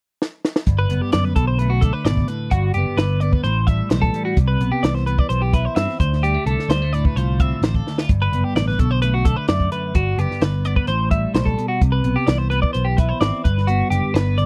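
Math rock and midwest emo in G major at 129 BPM, this intricate, bright excerpt is cut from a longer piece and moves in a straight 4/4. A compact cocktail drum kit opens with a short fill at 0.2 seconds, its high-tuned snare, punchy kick and hi-hat sitting dry and up front, and it throws in another fill at 7.9 seconds. From 0.7 seconds a picked electric bass adds an amped, warm low end, while a twangy clean electric guitar with subtle chorus fills in the accompaniment. A compressed twelve-string electric guitar, also touched with subtle chorus, joins at 0.8 seconds with bright, clean picked arpeggios above the rest. The harmony cycles through seventh chords such as Gmaj7, Bm7, Am7, Cmaj7 and Dm7 before returning to Gmaj7. The sound is a close, dry studio recording in a 1970s style with little reverb.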